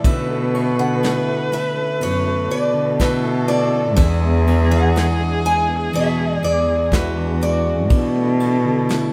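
A moderate studio reverb surrounds this reflective, heartbroken acoustic folk-pop ballad excerpt in B minor at 61 BPM, where a boxy picked archtop guitar carries the melody with audible finger squeak over a dark, clean semi-hollow electric guitar, a very quiet, slightly broken-up electric guitar playing arpeggios through a small old amp, a veiled, bowed cello con sordino holding the bass up front, soft brushes on a small-room kit with punchy kick, snare and ride, and a smooth, clear viola second line entering at 0.1 s, as the chords move from Bm11 to E7 and back to Bm11.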